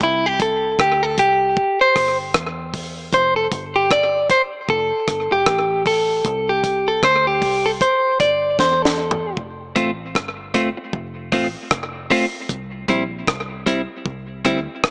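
A warm 77 BPM roots reggae groove in 4/4 with a swung sixteenth-note feel sways through this uplifting fragment of a longer piece in F major, moving between C and F chords. A clean, picked electric guitar sits up front with compressed tone and dub echo, taking a solo until 9.4 seconds, while a dark, round, foam-muted fingered bass adds a punchy low end. The dry, deep drum kit brings a high-tuned snare, tight kick, rim clicks, hi-hat and toms with slapback echo, rolling a fill from 8.6 seconds into the next passage, all set in a moderate spring reverb with a small-speaker character.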